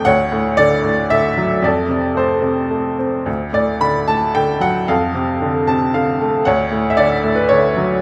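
Classical solo piano in a lyrical, relaxed mood, played with rubato in 3/4. A bright upright piano carries everything from 0.0 to 8.0 seconds, its woody, polished tone sitting up front with long sustain as the harmony moves between Dmaj7, F6 and D, with a short fill arriving at 5.4 seconds. A wet recital hall reverb surrounds the instrument, and lossy compression artefacts colour this brief cut from a longer piece.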